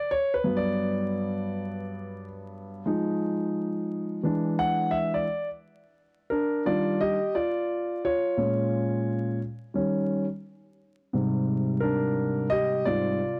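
Cool and smooth, this hip hop excerpt moves at 87 BPM in 4/4 with a swung sixteenth-note feel, set in Eb major. A dark grand piano carries the whole excerpt alone, ranging from G2 up to Gb5 with a mellow, vintage tone and long sustain that sits up front in the mix. The harmony leans on rich jazz colors, opening on Gmaj7 and moving through Fm7 and E7 before the second passage begins at 5.6 seconds on Ebmaj9. From there the chords travel through Bbm7 and Eb7 to settle on Abmaj9#11 at 11.1 seconds. The sound is dry and close, in the manner of a 1970s studio, with a layer of vinyl crackle.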